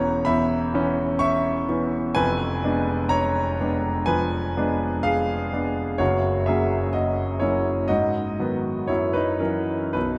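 A concert grand piano opens the recording at once, playing alone in a romantic classical character piece with a hopeful, lyrical mood. The pulse sits at 63 BPM in 4/4, shaped by a flexible rubato, and the instrument is tuned to A4 = 441 Hz. Its sound is clear and up front, with deep bass reaching down to E1, a range climbing to C#6, long sustain, and audible action noise that lends an intimate closeness. That closeness is set inside a vast, echoing cathedral reverb with a 4.9 s decay, so each chord hangs in the air. The harmony moves from C#m7/E through Fdim7, arrives on F# at 6.0 seconds, then passes through G#m7 and F#7. This short fragment of a longer piece ends at 10.2 seconds.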